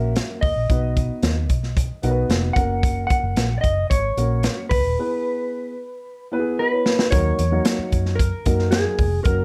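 Joyful and danceable, this short fragment of uptempo 1960s-style soul at 112 BPM sets a clean, mellow, up-front electric guitar melody over a woody, boxy upright piano accompaniment and a round, foam-muted fingered electric bass, while a swinging big-band drum kit with a punchy kick and medium-tuned snare enters at 0.2 seconds, all in light reverb, with a break from 5.0 seconds capped by a drum fill leading into a new section at 7.1 seconds.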